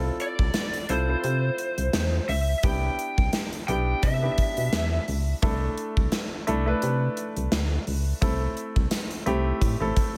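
Nostalgic and uplifting, this brief 1980s-style pop fragment pairs a polished grand piano's short-sustained chords and a punchy, round FM bass with a gated drum kit of tight kick, medium-tuned snare, hi-hat and tambourine in a bright stone room, while a dark, overdriven electric lead guitar with delay carries the melody only from 0.2 to 5.0 seconds over a lightly swung groove.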